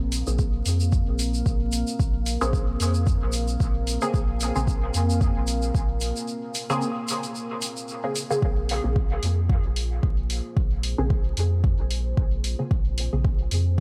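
Hazy and cavernous, this dub techno excerpt rests on a dark, detuned pad and a round, soft sub bass that both pump against an overdriven, up-front kick drum, while vinyl crackle hangs over the whole mix. Muted, filter-plucked chord stabs with phaser and dub echo drift above a gritty electronic hi-hat and a grainy, close tube shaker. A break runs from 6.3 to 8.4 seconds, after which the shaker drops out for good.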